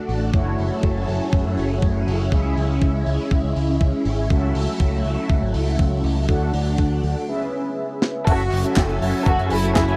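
Italo disco with a bittersweet, nostalgic mood, this short cut from a longer piece rides a thumpy, up-front electronic kick and a tight, dry funk kit of handclaps, hi-hat, snare and crash, under a punchy picked electric bass run through an envelope filter. A swirling, phased string machine holds sustained chords while mellow, brassy synth stabs with chorus and tape echo sit alongside. After a break at 7.3 s and a drum fill at 8.0 s, a lush, dark violin section takes the melody from 8.3 s, all captured in a close, dry 1970s-style studio sound.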